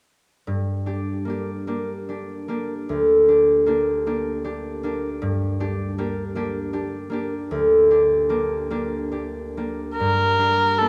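Elegiac and melancholic, this excerpt from a longer romantic classical piece is a duo for viola and harp in G minor, moving in a slow, rubato 12/8 at about 45-53 dotted-quarter beats per minute. The concert harp opens at 0.5 seconds on a G minor chord and carries the accompaniment alone for most of the passage, its bright, ringing fingerpicked tones reaching from low D2 up to G4. Only at 10.0 seconds does the viola enter with the melody, a smooth, even bowed line from a single player, sitting between A4 and Bb4 with vibrato and a rich tone. Both instruments sound up front, with the viola standing a little louder than the harp. A moderate reverb of a scoring stage, lasting about 1.9 seconds, gives the pair a spacious, resonant setting.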